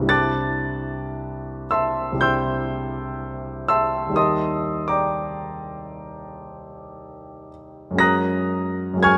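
The rhythm flows in a free rubato over a slow 4/4 pulse, drifting between 54 and 63 BPM. This short, dreamy and serene fragment of impressionist classical music is carried by a single grand piano, heard alone from 0.0 to 9.2 s across a range from C2 to A#6. The harmony glides from C69 to Ebmaj7 at 4.2 s and settles on F#add9 at 8.0 s. The piano sounds warm, intimate and natural, placed up front with long sustain and audible action noise that brings the listener close to the instrument. A moderate concert hall reverb, with an RT60 of 2.1 s, surrounds the playing with a gentle sense of space.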